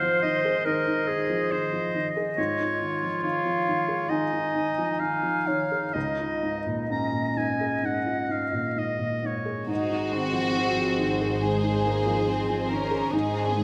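In a rubato 4/4 drifting between 62 and 71 BPM, this tender, moving cinematic fragment in Db major opens on a soft, felt-muted upright piano, intimate and up front, beneath lines from a clear oboe, an airy silver concert flute and a vintage clarinet. By 9.7 s the woodwinds have stopped and sul tasto string sections enter: dark violins carry the melody in the background while a second violin line sits up front, dark violas fill out the middle, and warm cellos and a floating, pure double bass section anchor the low end. Harmony moves from Ab to Dbadd9 and back, all set in a wet scoring-stage reverb.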